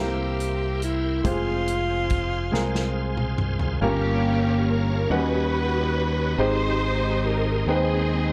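A bright, close-miked alto saxophone sings the opening melody with vibrato and tape echo over a clear, worn grand piano, a full, shouting tonewheel organ turning through a slow rotary speaker, and an up-front fingered electric bass, with a natural acoustic drum kit and its punchy kick joining at 0.4 seconds in this slow, soulful gospel piece in 6/8 and F minor at 47 BPM. The saxophone stops at 3.0 seconds as the drums play a fill, and at 3.8 seconds the drums fall away while a smooth-topped, bowed string section takes over the melody with expressive portamento, a soft attack and tape echo. The fervent harmony moves from C7 and Fm to Gm7b5, Eb7alt and Abmaj7 in a small room with a dark, warm production.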